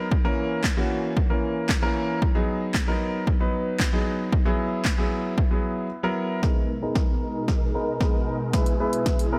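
A punchy analog drum machine drives this confident, bittersweet dance-pop cut in straight 4/4 at 114 BPM, its dry, overdriven kick, snare, hi-hat and handclaps sitting up front, while a clear, intimate concert grand piano with audible action noise and deep bass carries the G# minor chords through sidechain pumping, a low-pass filter and slapback echo. After a short break at 5.9 seconds, the drums launch a fill under a build-up, and at 6.4 seconds huge, lush supersaw chords enter with detuned sawtooth unison, a phaser and a moving notch, their bright sustained tone also pumping beneath a low-pass filter. The mix carries light reverb, and the passage is cut from a longer piece.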